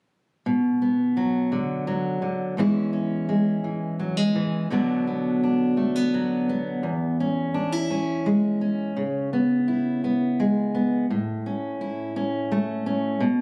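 A fingerpicked steel-string acoustic guitar opens at 0.5 seconds, playing solo in an intimate, haunting folk piece in B dorian. The tempo sits at 85 BPM in a straight 3/4, and the guitar's dark tone ranges from E2 to E4, placed up front in the sound. The first passage moves between Bm and E6. At 4.7 seconds, a second passage restates that pair before moving on to C#m7 and A, running until the guitar stops at 13.4 seconds. Captured on a phone in a club-like room with light reverb, the guitar has an auditorium character, and the piece is cut from a longer work.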